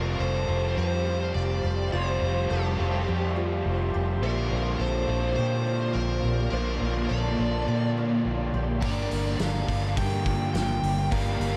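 A dark, round, foam-muted electric bass sits up front in this dreamy, wistful shoegaze and dream pop excerpt, moving under Fsus2, Bbadd9 and Gm7 chords in a mix soaked in huge reverb. A biting lead guitar with overdrive and diffuse delay carries the melody over a blurred, detuned granular cloud pad; a shimmering, boxy fingerpicked twelve-string acoustic with chorus, delay and audible finger squeak; and two overdriven background riff guitars, one crunchy with reverse reverb and one raw and lo-fi with subtle chorus. At 8.8 seconds a double-tracked overdriven guitar with phaser joins on a riff, alongside a distant, roomy indie drum kit with a fat snare and punchy kick.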